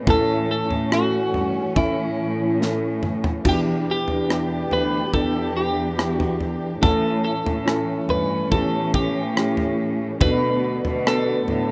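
A felt-muted upright piano, a lush string section and a bowed cello section open this slow, longing pop ballad at 71 BPM in a straight 4/4, cut from a longer piece. The piano sits in the background, soft and boxy, with its action noise audible. The strings hold sustained chords with a sul tasto softness and gentle vibrato, while the cellos carry the bass line with a rich, intense vibrato. A clean, compressed twelve-string electric guitar takes the melody up front, its picked tone shimmering through a subtle chorus. A punchy, polished acoustic drum kit is also up front, using kick, medium-tuned snare, rim clicks, toms and crash cymbal, and it plays a fill from 2.6 to 3.4 seconds. The chords move from A to Em7, back to A and on to Bm7, all inside a small room that gives the emotional arrangement the rough feel of a home demo.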